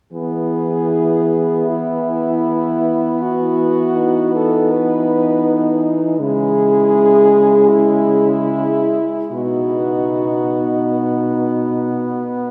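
Three French horns sound together at 0.1 s: a warm, smooth-topped horn carries the melody, a clear, soft-attacked horn plays the accompaniment, and a mellow, distant horn holds the bass, with a fourth horn adding a second line from 0.2 s. This tender, lyrical classical passage for horn quartet is cut from a longer piece and moves from E to C#m at 6.2 s before settling on B, each horn shaded with light vibrato. A cathedral reverb places the quartet further back in a resonant space.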